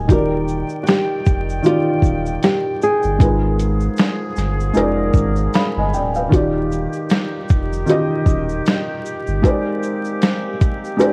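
A felt-muted upright piano and a round sine sub bass open this dreamy, nostalgic lo-fi hip hop excerpt at 77 BPM in Eb major, with a swung 16th-note feel in 4/4. The piano sits up front as soft, intimate accompaniment with audible action noise, its tone dulled by cassette tape and a low-pass filter. The deep bass holds sustained notes until 9.4 seconds. A dark, boxy flamenco guitar, thumb-plucked and filtered, carries a brief melody until 3.6 seconds, while a distant woodwind section with vibrato holds mellow sustained chords. The dusty sampler-style drum kit is compressed and gritty, with a thumpy kick, medium-tuned snare, hi-hat and shaker, and a grainy tube shaker sits in the background. Light reverb, small room ambience, vinyl crackle and worn, warbling tape pitch drift color the sound as the chords move from Ebmaj7 to Abm6 and back, landing on Abmaj9#11.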